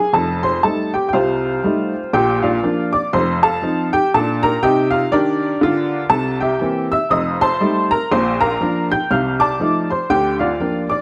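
A swinging 4/4 pulse at 121 BPM drives this exuberant, playful stride piano fragment in Bb major, tuned slightly below standard at A4 = 438 Hz and cut from a longer piece. A solo upright piano carries the whole passage, its worn, woody, slightly detuned tone sitting up front with audible action noise and a touch of tape echo, ranging from deep bass to high treble across changes that move between F9, Bb, C7 and F7/C before landing on Bb/D. A small room adds modest reverb, and the overall production leans dark, framing the piano's brilliant, intimate character.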